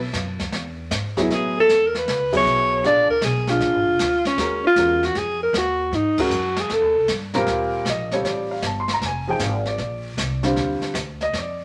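A mellow alto saxophone with vibrato and a smooth top leads this swinging, warm small-group jazz piece, cut from a longer performance, playing up front between 1.2 and 7.1 seconds at 155 BPM with a swung eighth-note feel, as the band hits two accents together beneath it. A natural-sounding baby grand piano, also up front, provides accompaniment, while a woody pizzicato upright bass and a brushed drum kit with dark cymbals and a boomy kick sit further back. Moderate studio reverb surrounds the group, and the harmony settles into Bb major from 7.5 seconds.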